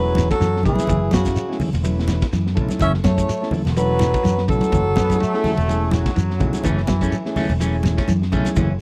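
A breathy, whispered alto saxophone carries the melody up front in this hypnotic, funky afrobeat piece, shadowed by a distant, clear trombone until 5.9 s, while a mellow vintage combo organ with spring reverb, a scooped semi-hollow guitar playing arpeggios through ensemble chorus, a punchy fingered bass, a gritty breakbeat drum kit with a high-tuned snare, thick-skinned congas and a grainy shekere keep the groove going; a bright trombone section joins at 5.0 s and a twangy, slightly broken-up guitar adds stabs from 6.6 s, captured in a dry, close 1970s-style studio sound.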